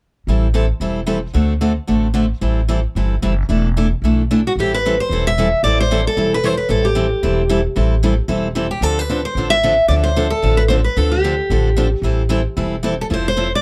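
Acoustic string swing in the jazz manouche style, this fiery, swinging excerpt moves at a quick 225 BPM in A dorian, with a picked steel-string guitar and a thumpy, woody upright bass on gut strings playing pizzicato together from 0.3 seconds over chords like Am7, D7 and E7sus4. At 4.6 seconds the music settles into A minor and a second picked guitar takes the melody from 4.5 seconds, its bright tone and finger squeaks sitting up front as the harmony passes through Dm7 and on to Fmaj7. The dry, dark production keeps both guitars and the bass close and present.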